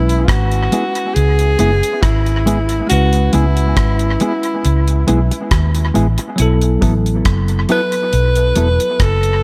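A breathy, subtoned alto saxophone opens this smooth, bittersweet lovers rock reggae excerpt in C# minor at 69 BPM, its close-miked, whispered melody carrying vibrato, scooped notes and tape echo over a bell-like tine electric piano and a round, foam-muted bass that sits dark and up front. The deep reggae drum kit enters at 0.1 seconds with hi-hat, rim click and a tight, dry kick, dressed in gated reverb and dub echo, while a mellow, clean electric guitar adds compressed stabs with dub echo from 0.7 to 8.7 seconds. The harmony rests on C#m7 before shifting to B7sus4 at 6.4 seconds, all within a small room ambience and a lightly swung 16th-note feel.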